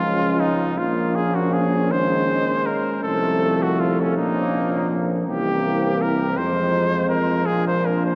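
Lyrical and serene, this short, hymn-like classical excerpt for brass band unfolds in a lilting 6/8 with a freely breathing rubato feel, moving through chords such as Db, Bbm7, F/C and C7 before settling on Bb. A warm, vibrato-touched solo cornet carries the melody up front, while a very quiet, dark French horn section adds a distant second line, a bright, tight trombone section and a mellow solo trombone supply the accompaniment, and a vintage-toned tuba anchors the bass. A long, wet cathedral reverb surrounds the ensemble in a dusky, reverent haze.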